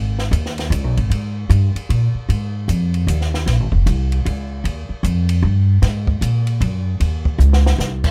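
A woody, thumpy pizzicato upright bass sits up front from the start, joined at 0.2 seconds by a dry compact cocktail drum kit with dark cymbals, a high-tuned snare and a punchy kick, the two swinging a sophisticated, relaxed jazz piano trio groove in 3/4 at 153 BPM in Ab major, with a drum fill at 7.4 seconds in this short, close-sounding excerpt cut from a longer piece.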